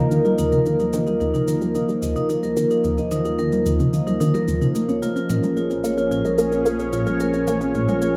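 A straight 4/4 pulse at 110 BPM is marked by electronic cabasa and toms with an analog character, re-recorded in a large room and trailed by tape echo. This is a short, hypnotic, cosmic stretch of sequencer-driven ambient space music, cut from a longer piece and moving from Ebsus2 to Bbm7 at 4.7 seconds. Up front, a bright, evolving pad built from detuned sawtooth and triangle tones with ring modulation holds sustained chords through chorus, its slow filter swell giving it a full-bodied sweep. A squelchy, resonant blip pluck with a fast attack and short decay repeats a riff through phaser and tape echo, while a close-miked vibraphone played with medium mallets, motor off, rings out metallic arpeggios with its own tape echo. Beneath them sits a mellow, nasal analog drone using pulse-width modulation, kept in the background, and a filter sweep on a synth arpeggio sound runs throughout, all set in a wet plate reverb with a 2.5 s decay.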